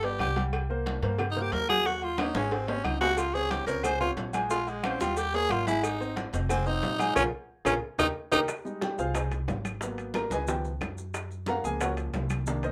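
Afro-Cuban jazz at a fiery, sophisticated 181 BPM, cut from a longer piece, opens with a raspy, growling tenor saxophone soloing up front with scooped notes and light vibrato over woody upright piano, growly pizzicato upright bass, and a background bed of bright congas, tight high-tuned cowbell and bongos, ringing timbales and agogo bells, and claves, with grainy maracas joining at 3.2 s. Drum fills arrive at 2.2 s and 7.2 s, the second paired with a band accent. At 8.5 s the saxophone gives way to a piano solo as the music settles into F minor, all set in a moderate club reverb.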